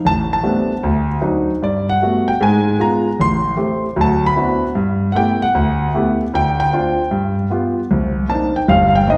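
A warm concert grand piano plays solo jazz in G major at 153 BPM, swinging its eighth notes with a warm, playful mood across a span from G1 to C6. Heard up front with an intimate sound, audible action noise and a deep, natural bass, the piano moves through rich extended chords such as Am11, D7b9, Gmaj9 and G69 before shifting to Cm9 at 7.9 seconds. A wet recital hall reverb surrounds the playing in this brief cut from a longer piece, which runs to 9.2 seconds.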